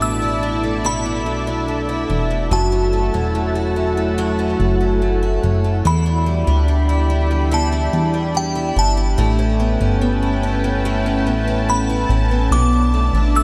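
Blissful and floating, this dream pop excerpt drifts at 72 BPM in a dark, huge ambient space, where a glassy FM synth bell carries the melody through chorus, tremolo, phaser and delay over a lush, detuned unison pad, a bright, boxy twelve-string acoustic guitar picking shimmering octave-doubled arpeggios up front, and a punchy, funky analog bass with a filter pluck, moving from Bm7 and F#m7 to a long Em7 before settling on Bm11 at 12.5 seconds.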